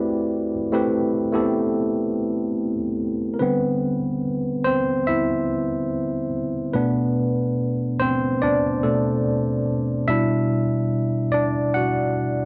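A worn, slightly out-of-tune tine electric piano carries this short R&B passage alone, lightly overdriven through a combo amp and placed up front in the mix. The mood is smooth and sultry, set at 72 BPM in 4/4 with a gentle 16th-note swing and tuned to A4 = 439 Hz. The piano ranges from B2 to F#5 over a chord sequence of Am7, D9sus4, Bm7 and Em9/B. After an opening statement, it moves into a solo passage from 3.4 seconds to the close at 12.5 seconds. A moderate studio reverb gives the instrument some space, and the clip is cut from a longer piece.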